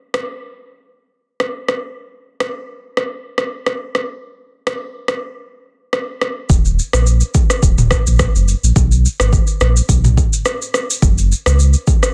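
Breezy and joyful, this afrobeats excerpt moves at 106 BPM in 4/4 with a gentle 16th-note swing and a tuning a touch below standard pitch. An electronic afro-pop drum kit carries it from the start, its deep kick, rim click, shaker and toms sitting up front with an overdriven grit, as if re-recorded in a small room. The kick drops out from 4.2 to 6.5 seconds, leaving the lighter percussion to carry the groove before the second section begins. At 6.5 seconds a sub bass with an added octave enters, a full, sine-toned part with a fast attack and sustained notes ranging from D#1 to C#2, placed up front and slightly louder than the drums. The sound is dry, with little reverb, and the master is dense and heavily limited in a modern style.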